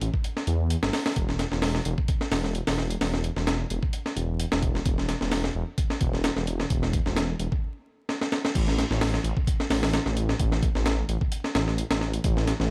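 A gritty, pitched-up breakbeat kit and a deep, detuned sawtooth bass open this swaggering, energetic breaks excerpt at 130 BPM in 4/4, with a light 16th-note swing and a bed of vinyl crackle underneath. The sampler-style drums sit up front, compressed and tape-toned, with a thumpy kick, a high-tuned snare, hi-hat and crash cymbal, all carrying a touch of studio reverb. The bass is also up front, a rumbling unison sawtooth with a sine underpinning, its detuned layers beating against each other while the fast-attack notes sustain with a mellow edge, moving between E1 and E2. At 7.6 seconds the groove stops, and a drum fill at 8.1 seconds leads into the drop at 8.6 seconds. The drop carries the same drums and bass through to the cut, keeping the momentum high.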